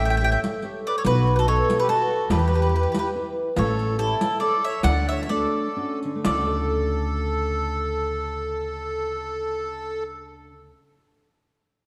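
Lively and romantic, this short cut from a longer Italian folk serenade moves in a swinging 3/4 in D major, with a tempo that ranges from 118 to 144 BPM and slows between 3.6 and 6.3 seconds. A bowl-back mandolin carries the melody up front, its picked double strings sounding warm and touched with a slapback echo. Beneath it, a reedy, sweet accordion with light tremolo tuning plays a second line, while a fingerpicked classical nylon-string guitar supplies the accompaniment. The upright bass sits equally forward, plucked and woody with a dark steel-string tone, and a riq adds band-limited, vintage-sounding dark jingles until it stops at 6.5 seconds. The chords move from A7 through B7 and Em back to A7 before settling on Dmaj7, and a moderate scoring-stage reverb gives the ensemble a sense of open space.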